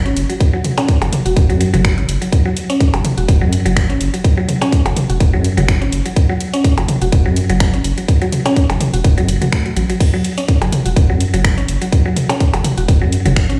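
A swung sixteenth-note groove in 4/4 drives this hypnotic, clinical minimal techno cut, anchored by a tight, layered electronic kick sitting up front and a booming analog drum machine whose dry crash, finger snaps and metallic hi-hats carry a tape-tinged edge. A deep, saturated sine sub bass pumps against the kick, while a woody, round FM pluck plays a mallet-like riff with a bright, percussive attack, lush chorus, cassette grit and digital delay, and electronic toms and percussion blips trail dub echoes. The whole fragment sounds as if played on a big sound system in a bare stone room, giving the parts a light stone-room reverb.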